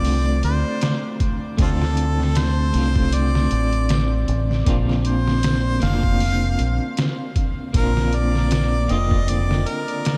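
A dreamy, reverb-soaked mix set in a vast cathedral-like space frames this dark, hypnotic trip hop excerpt, where a warm harmonica carries the jazz-styled solo melody with light vibrato, scooped notes and tongue slaps, trailed by tape echo. Beneath it, a slightly broken-up picked electric guitar with tremolo and tape echo accompanies over Dm7 moving to Bbadd9 at 4.7 seconds. A round, punchy dub bass sits up front until 9.6 seconds, while a muffled, pitched-down sampler-style kit with a thumpy kick and overdriven grit drives a gently swung groove.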